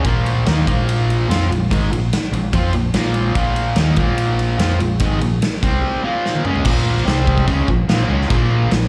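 Heard through a club PA with a mostly dry sound, this menacing, aggressive hard rock clip drives a bright, double-tracked distorted guitar riff over a dark, round fingered bass and an up-front rock drum kit with a punchy kick and bright cymbals, shifting between power chords and a minor chord before a drum fill at 6.2 seconds launches the next section.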